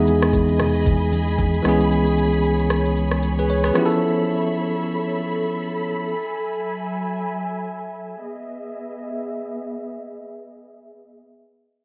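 A bell-like tine electric piano carries the accompaniment in this soulful, relaxed amapiano fragment, its bright, clean voice sitting up front behind a low-pass filter until it stops at 6.1 seconds. Lush bowed strings hold sustained chords underneath through a low-pass filter, their woody vibrato carrying on alone after the other parts fall away and lasting until 11.2 seconds. A round sine sub bass gives a deep foundation for the opening moments, stopping at 3.7 seconds. An electronic drum kit with a knocking kick, rim click and shaker adds a swung sixteenth-note lilt, joined briefly by very quiet, low-tuned congas played with soft hands. Moderate digital room reverb gives the rough home-demo mix a sense of space as the chords move from Emaj7 through C#m7 and an altered C#7 to F#m11 before returning home.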